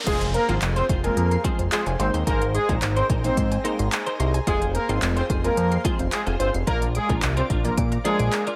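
Confident and energetic, this dance-pop drop moves at 109 BPM in a straight 4/4, centered on F dorian and cycling through Fm, Abadd9, Fm and Bb. A punchy, up-front deep house kit of kick, handclaps, smooth hi-hats and crash cymbal drives it alongside a fat, thick analog bass built from sawtooth and square waves, with a filter sweep, a moving notch and sidechain pumping. Out front, a warm horn section carries the melody in a smooth, pop-style ensemble with light vibrato, also pumping against the kick. A clean, compressed twelve-string electric guitar plays a picked riff through ensemble chorus, while in the background a crisp, detuned wavetable chord stab with phaser and a lush unison pluck spinning delayed arpeggios up to D7 fill in the detail. Beneath it all, a very quiet, airy pad sustains soft breathy chords, and the mix stays dry, with a high-pass filter, in this 8.6-second cut from a longer piece.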